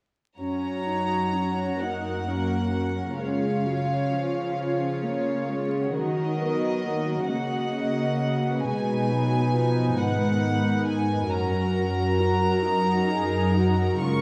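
At 0.4 s, sections of violins, violas and cellos begin together in a slow, rubato cinematic passage in F# major at 44 BPM in 6/8, uplifting and tender in mood. Dark violins carry a pure, floating sul tasto melody above a warm second violin line. Intimate, dark violas add accompaniment with light vibrato, while up-front cellos supply the bass, all four sections playing through to 14.2 s as the harmony moves from F# to C#, D# minor, B and back to F#. Cut from a longer piece, it is heard from further back in the room on a scoring stage, with wet reverb and vinyl crackle.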